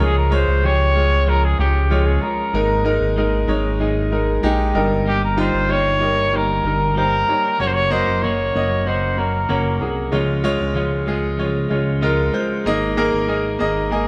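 This uplifting pop excerpt opens with the full band at once: a punchy, vintage-toned trumpet carries the melody with vibrato, set up front over a polished concert grand piano, a twelve-string electric guitar riff and a chorused synth bass. The tempo is a moderate 95 BPM in a straight 4/4, and the harmony moves through Db, Absus2, Eb/G and Gb before returning to Db and Absus2. The piano sounds clear with a deep low end and short sustain, and it breaks into fills at 4.1 seconds and again at 13.3 seconds. Tucked into the background, the guitar is bright, clean and twangy, picked with a compressed edge and bathed in spring reverb. The synth bass is glossy and retro, a dark blend of a pulse-width-modulated pulse wave and a sawtooth with a fast filter pluck, sitting up front. The band plays together in a moderate stone room that lends a warm, live feel, and the trumpet drops out at 9.8 seconds while the others continue to the end of the cut.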